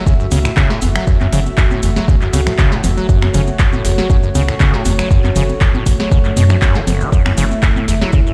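Acid house cut from a longer piece, gritty and hypnotic over a lone F#m7 chord, where a squelchy, resonant sawtooth acid bass with chorus and overdrive pumps against a punchy, tape-warm, up-front kick and a deep sine sub bass, while a booming analog drum machine adds crisp snare, metallic hats, handclaps, finger snaps and congas, grainy maracas sit dry in the background, and a mellow chorused pad holds sustained chords, all ringing through the stone room reverb of a big sound system in a bare room.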